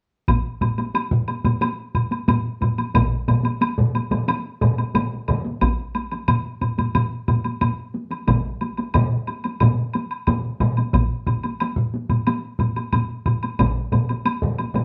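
Ceremonial and driving, this straight 90 BPM Japanese traditional taiko piece in 4/4, cut from a longer work, sets heavy-stick solo taiko drums up front over three taiko ensembles (one struck with hard sticks, two with heavy sticks, one of those in a live-room sound), one of which enters at 2.9 seconds, and a woody woodblock, all played together in one room with a wet studio reverb.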